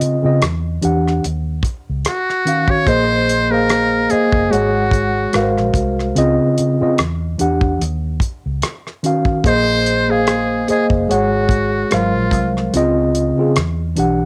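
R&B and neo-soul at a slow, late-night 73 BPM in Eb dorian with a gentle 16th-note swing, this sultry excerpt from a longer piece sets a mellow tine electric piano, up front with cassette-tape colour, over a dark, round, foam-muted fingered bass with transformer saturation and a dry, damped 70s kit of tight kick, hi-hat and rim click, while a buzzy, breathy metal-muted trumpet with light vibrato and scooped notes plays a jazz-style solo from 2.1 to 12.6 seconds across a cycle that moves from Em9 and Ebm9 through Bb9sus4 and Ab13 to Dbmaj9, all in a moderate studio reverb with a homespun cassette character.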